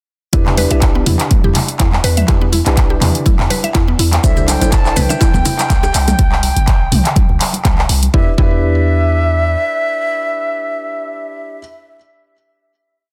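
Earthy afro house in E minor at 123 BPM with a gently swung 4/4 groove: a deep four-on-the-floor electronic kick, a deep house kit of dark hi-hats, handclaps and low toms, and soft-handed congas drive a boomy 808-style bass and a woody, round mallet-like synth pluck cycling a 12-step arpeggio that drifts against the bar, while a muted felt upright piano with audible action noise pushes syncopated close-voiced stabs. At 4.2 seconds an airy, reedy bansuri enters with vibrato-laced call phrases over a shift from Em7 to C69. It is briefly joined by grainy background maracas and, from 4.5 seconds, tight high-tuned bongos. The kit and congas fall away at 8.1 seconds, the kick, pluck and bass soon follow, and the piano and bansuri linger over a final Em7.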